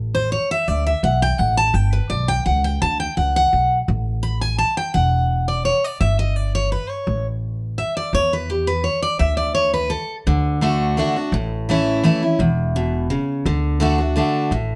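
A picked steel-string acoustic guitar leads this rustic, joyful bluegrass excerpt in 3/4, taking a solo from the start until 10.3 seconds with a jumbo-bodied, up-front sound where finger squeak can be heard on the strings. Beneath it, a pizzicato upright bass with steel strings gives a woody, growly, thumpy bottom end, dark in tone and also placed up front. The guitar covers a broad range and carries the accompaniment after its solo, while the bass stays low in its register. The harmony moves through chords such as G, D and A, with a Bm11/D colouring the close of the solo passage before a new section begins at 10.3 seconds. Light reverb gives the pair a modest sense of space, and the recording is cut from a longer piece.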